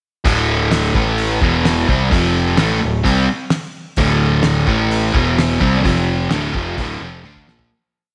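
A sludgy distorted guitar and a bright, direct picked electric bass open this gritty, swaggering classic rock piece at 129 BPM in D dorian, with the bass doubling the guitar's power-chord riff in a syncopated line. An overdriven semi-hollow guitar with spring reverb joins up front alongside a dry, dark 70s drum kit with a fat snare and tight kick, all cycling through D5, A5, E5, C5 and F5 in a big rock groove and settling on D minor at 6.3 seconds. The whole sits in a small room with echo-chamber reverb, fading out from 5.8 seconds as the drums play a closing fill at 7.2 seconds.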